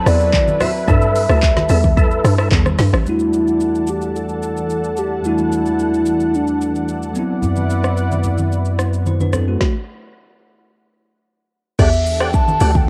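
Hypnotic and deep, this amapiano excerpt opens with a hollow, woody clarinet-like synth lead carrying the melody over a lush, warbling detuned pad that pumps to the beat, a bouncy log drum bass, round percussive tonewheel organ stabs spun through a fast rotary speaker, thin-skinned, low-tuned congas in the background, and a deep house kit with a deep kick, woody snare and smooth hats, gritty with vintage sampler texture. By 3.1 seconds the log drum, organ and congas have dropped away as a bell-like tine electric piano takes up the accompaniment, and a full, mellow sine sub bass with octave enters at 7.4 seconds as the congas return. After a stop from 9.6 seconds, the log drum, lead and organ return at 11.8 seconds, all colored by light reverb and the soft haze of home cassette recording.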